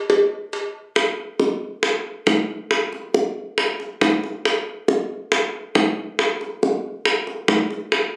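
A straight, danceable 4/4 groove drives this short latin percussion excerpt, carried entirely by cowbell and bongos playing from 0.1 to 8.1 seconds. The tight, high-tuned drums and bell sit up front with a live, acoustic presence, giving the passage a sultry energy. Captured on a phone in the studio, the sound carries audible room ambience and a short, wet reverb.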